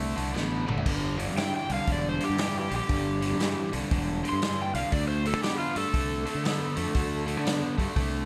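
Lightly reverberant and heavy with a smoky blues rock and southern rock swing, this fragment sets a crunchy, double-tracked electric guitar riff up front over growly fuzz bass and a vintage acoustic kit with dark cymbals and a punchy kick that plays a drum fill at 0.4 seconds, while a bright, overdriven slide guitar carries the melody with slapback echo from 1.4 to 7.2 seconds.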